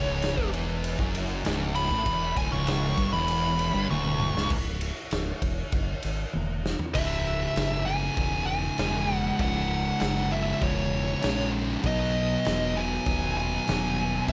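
A studio reverb surrounds this brooding, sludgy stoner and doom metal excerpt, cut from a longer piece and moving at 98 BPM in 4/4 with a straight feel in C# minor. A thick, double-tracked fuzz guitar sits up front with a distorted, picked riff in the low register, while a growling fingered electric bass, overdriven and both direct and amped, holds down the bottom from C#1 to B1. A dark fuzz lead guitar carries the melody between C#5 and C#6, its distortion trailed by tape echo, and it takes a solo over the opening 4.5 seconds. The raw garage drum kit enters at 0.2 seconds, up front and saturated, with a punchy kick, a medium-tuned snare, toms, crash and ride heard in a bright stone room under a gritty, rolled-off top. Drum fills mark the turns at 3.9 and 6.3 seconds, and the harmony sits on C#m until a shift to B at 11.8 seconds.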